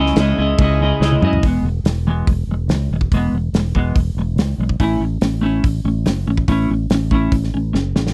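A dry, close 1970s-style studio sound frames this short, jangly and carefree indie rock cut, where a clean, compressed, double-tracked electric guitar riff and a fingered electric bass sit up front alongside an equally forward loose indie drum kit with dark cymbals and a punchy kick, moving from C#madd9 to E at 1.4 seconds and A at 4.8 seconds, with drum fills at 1.0 and 7.7 seconds.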